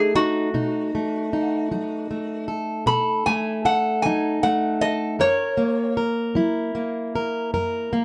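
Rollicking and gritty, this brief acoustic country blues excerpt moves at 51 BPM in a straight 12/8, with a metallic, nasal resonator slide guitar played with a steel bar and fingerpicks carrying the melody up front until 6.0 seconds over a full-bodied, fingerpicked jumbo steel-string acoustic guitar whose finger squeaks come through as it plays from B7 to F#7 at 5.2 seconds in a snug booth ambience.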